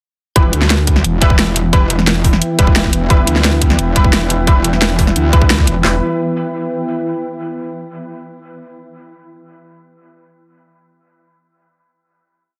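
A metallic, aggressive wobble bass sits up front from 0.4 seconds, its distorted, chorused FM tone carrying modulated phrases with changing wobble speed in this futuristic, mechanical dark technical drum and bass piece in E minor at 175 BPM. Two overdriven electronic drum kits drive it, one with a tight kick, cracking snare and handclaps in a broken-beat pattern, the other adding bright hats and a second snare, while sparse, nasal orchestra-hit-like stabs echo above and a swarming, detuned drone joins in the background at 1.5 seconds. A deep, moody ambient pad with slowly shifting chords enters at 2.2 seconds and sustains through the final chord to 7.2 seconds after the drop, all within a dense, heavily limited master.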